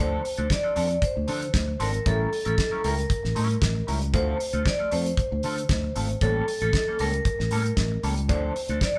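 A danceable, glamorous disco groove in a straight four, cut from a longer piece and lasting about nine seconds, with a band playing live in one room under light reverb. A ringing, metallic vibraphone struck with medium hard mallets carries the melody in a narrow upper range, its fast motor vibrato shimmering against a boxy small-room sound. Beneath it, a dark, clean, fingered electric guitar supplies accompaniment through a wah, sitting lower in the mix than the other parts. A punchy fingered electric bass, direct and amped, anchors the low end and drops out at 8.8 seconds. The damped 70s drum kit enters at 0.2 seconds, dry and up front with a fat snare, tight kick, hi-hat and a rolled-off top, while the harmony alternates between Dm7 and A7b9 throughout.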